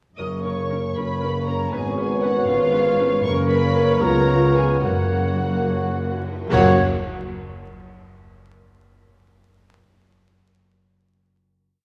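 A lush, vibrato-rich violin section carries the melody in this brief, lively and cheerful romantic orchestral piece in F# major, moving in a rubato 6/8 at 69-80 BPM, slowing from 2.5 s before a full-band accent and final chord at 6.5 s. Bright flutes double the tune in unison and thirds, a clear second violin section doubles it at the octave, and a mellow cor anglais, dark punchy bassoon, rich violas and mellow vintage French horns fill in sustained chords, while a bright trumpet section adds soft-edged stabs and cellos, double basses and tuba hold the bass beneath a ringing, thumb-plucked harp whose broken chords sound until 7.7 s. Dark cymbal swells, crashes and bass drum strokes join at 3.2 s, and the whole sits in a reverberant concert hall colored by worn, warbling tape and vinyl crackle.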